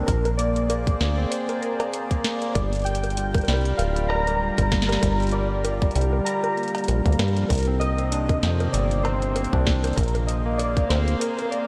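IDM at 97 BPM in 4/4, this glitchy, cerebral fragment sits in G phrygian with a 56% swing on the sixteenths, its chords moving from Bb9 to Gm7, then Cm9 and back to Bb9. A warbling, nostalgic tape-like pad holds sustained chords with a slow attack and long release, coloured by chorus, while an overdriven tine electric piano plays barky, gritty arpeggios through a combo amp with analog delay. Up front, a deep, rubbery acid bass with a resonant sawtooth filter sweep and tube saturation carries the low end until 11.2 s. A booming analog drum machine supplies bongos, cowbell, metallic hats and a crisp, dry snare, joined by a tight, tape-tinged electronic kick drum that drops out at 10.9 s. Over it all, detuned lo-fi synth keys carry the melody, mellow and wobbly, roughened with 12-bit sampler grit and echoed by analog delay, and the dreamy mix is soaked in a lush hall reverb.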